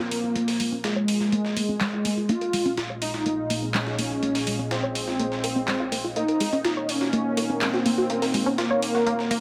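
Melancholic and cinematic, this melodic techno build-up, cut from a longer piece, sets a thick, detuned unison lead with vibrato up front over a deep, moody analog pad and a tight, driving sequenced arpeggio, both of which carry filter sweeps throughout. From 0.1 seconds, a gritty, overdriven sampler-style soul kit supplies hi-hat and snare while a layered electronic techno kit adds handclaps and hats. The chords move from Bbsus2 through Db/Bb to Ebmadd9, all bathed in a huge ambient reverb.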